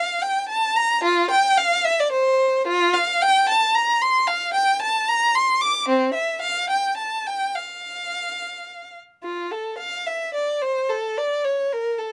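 Classical, a baroque-style suite movement excerpt for unaccompanied violin in F major, flowing and radiant at 110 BPM in a rubato 3/4, in which a single bowed violin, rich and focused with vibrato, plays alone from 0.0 to 12.1 seconds across a span from C4 to D6, captured up front by close, detailed microphones in a nearly dry room, its opening material returning at 9.2 seconds.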